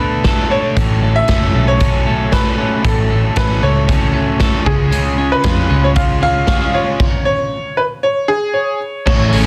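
Breezy and youthful, this short excerpt of jangly indie pop moves in a straight 4/4 over chords of Bm7, F#m7 and C#. A bright, woody upright piano carries the melody up front, its slightly detuned tone showing audible action noise and long sustain under plate reverb. Beneath it, a twangy, compressed twelve-string electric guitar picks arpeggios through spring and plate reverb with tape echo, while a crunchy overdriven guitar adds picked accompaniment. A foam-muted, round picked electric bass anchors the low end, and a raw garage drum kit enters at 0.2 seconds with a punchy kick, medium-tuned snare, hi-hat and crash, sounding up front in a stone room with a rolled-off top. A stop runs from 7.0 seconds, and at 9.1 seconds a buzzy overdriven combo organ with heavy vibrato slips in quietly in the background, all within a dense, heavily limited modern master.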